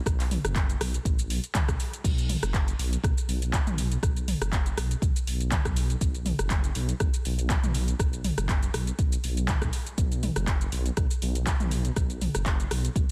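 A dark, rumbling detuned saw bass sits up front with sidechain pumping as it holds low in the F#1 to B1 range. This spiritual, earthy afro house cut from a longer piece moves at 121 BPM with a light 16th-note swing, driven by a deep electronic kick and a layered deep house kit of crash, handclaps, metallic hats, rim click, shaker and toms, overdriven and touched with studio reverb. The room sounds mostly dry, and the dense, heavily limited master carries a faint mains hum.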